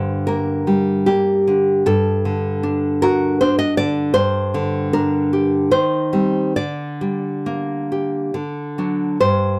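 Intimate and passionate, this short romantic fragment for solo classical guitar is cut from a longer piece and lasts about 9.6 seconds. A single nylon-string guitar carries everything, fingerpicked in a flexible rubato that gives the waltz-time metre a breathing, expressive pulse. Its tone is bright and up front, spanning from G2 up to Eb5. The harmony moves from G minor through D over G, back to G minor, then through C minor over Eb and G minor over D before settling on D, leaving the phrase open. The sound is dry and close, like a 1970s-style studio recording, touched with light reverb.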